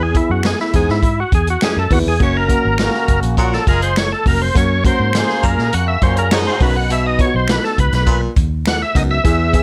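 Warm and uplifting, this short cut from a longer piece is uptempo 1960s-style soul in a straight 4/4, led throughout by an overdriven tonewheel organ whose full, gritty tone, percussive third-harmonic attack and chorus vibrato sit up front as it carries the melody. Beneath it, a barky, reedy electric piano heard through its built-in speakers adds accompaniment with light overdrive and spring reverb, while a clear baritone saxophone with jazz-style vibrato plays a low riff. A dark, round, foam-muted fingered electric bass anchors the bottom, and a swinging big-band drum kit with a boomy kick and medium-tuned snare sounds roomy and distant yet prominent in the mix. Finger snaps sit in the background from 0.4 seconds, a warm horn section with light vibrato adds a roomy second line from 2.5 to 6.7 seconds, and a bright, twangy, slightly broken-up electric guitar slips in a brief picked riff between 6.0 and 7.6 seconds. 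The harmony moves from E to F# to B, all bathed in light reverb.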